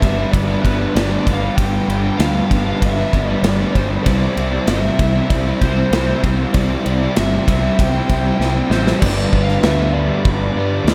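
At a straight 97 BPM in 4/4, this dreamy, wistful shoegaze and dream pop rock excerpt in G major moves from G to C and back, with a bluesy distorted lead guitar singing a melody through tape echo over two warm, overdriven, picked rhythm guitars in the background, one with analog chorus and one with reverse reverb, a growly, punchy fuzz bass, and an up-front gated 80s drum kit with bright cymbals whose fill at 8.4 seconds leads into a new section at 9.0 seconds, all soaked in a lush hall reverb.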